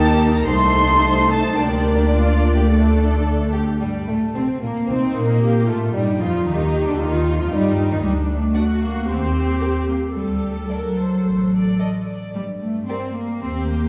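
The sound is wet, with a scoring-stage reverb and a small-room ambience that place the listener further back from this restless, urgent classical-period movement for string orchestra, which is cut from a longer piece. A warm, intimate chamber violin section carries the melody with vibrato, soft attacks and sul tasto bowing, while a studio violin section, close and lightly vibrated, traces a second line. Violas lend a dark, woody, lush accompaniment, and a rich cello section with a pure, floating tone shares the bass with dark, up-front double basses. The quick pulse is shaped with rubato as a brief opening section gives way to a longer second section at 3.8 seconds, its harmony drifting between minor, diminished and E-flat colors before settling on G minor. Both violin sections stop at 13.0 seconds, leaving the lower strings to sound alone until 13.9 seconds.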